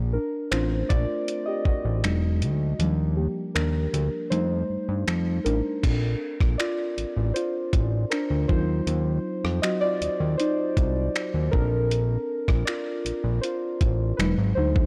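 Dark, warm production with light reverb frames this tender, romantic contemporary R&B fragment in Bb major, moving at an unhurried 79 BPM in a straight 4/4 feel. Muted, felt-like synth keys carry the lead from the opening moments, their soft, intimate tone thickened with chorus as they shade lush chords such as Bbmaj9, Emaj9, Ebmaj9 and F9. Beneath them a fat, saturated analog bass with a plucky filtered attack sits up front, holding the low end with thick sustained notes. A dusty, sampler-style drum kit joins at 0.5 seconds with a gritty, compressed character, combining finger snaps, hi-hat, rim clicks, crash cymbal and a thumpy kick. The kick drops out from 2.8 to 5.8 seconds before returning as the harmony settles into a second passage that turns briefly to a darker Ebm6 chord.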